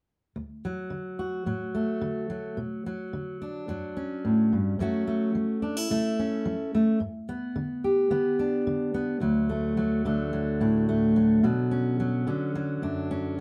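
A fingerpicked steel-string acoustic guitar carries this short folk excerpt, its jumbo body giving a full-bodied tone that sits up front. The mood is uplifting and hopeful, moving at 108 BPM in a straight 4/4 in D major. The guitar plays an accompaniment role from 0.4 to 13.4 seconds, working through D, Bmadd9, F#m and G before returning to D and Bmadd9 as the passage shifts into a new section at 9.2 seconds. A moderate small-room reverb adds a touch of natural space, and the sound has the immediacy of musicians playing live together in one room. Cut from a longer piece, the fragment feels like an open, gently optimistic passage.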